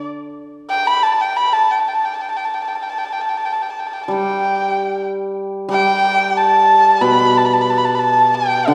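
Chinese traditional chamber music in a graceful, pastoral mood, this short excerpt opens with a solo erhu carrying the melody up front in a nasal, woody voice with vibrato and portamento, joined at 4.1 s by a bright, shimmering hammered dulcimer accompanying low beneath it, both set in a reverberant recital hall and heard from further back in the room.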